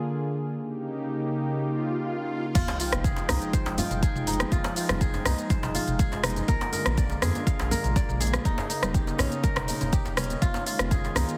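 A deep, layered electronic kick sits up front in this spiritual, driving afro house excerpt at 122 BPM in F minor: a smooth, detuned sawtooth pad with chorus and sidechain pumping opens alone, and an electronic swell and sub drop from 1.7 s leads into the drop at 2.6 s. Around that point enter crisp, fingerpicked kora arpeggios with digital delay, a round, dark analog bass, and an afro-pop kit with smooth hats, crash, rim click, shaker and toms. Very quiet, high-tuned congas join along with a djembe with metal rattles sitting in the background, and the mix carries a moderate plate reverb and a heavily compressed radio sound.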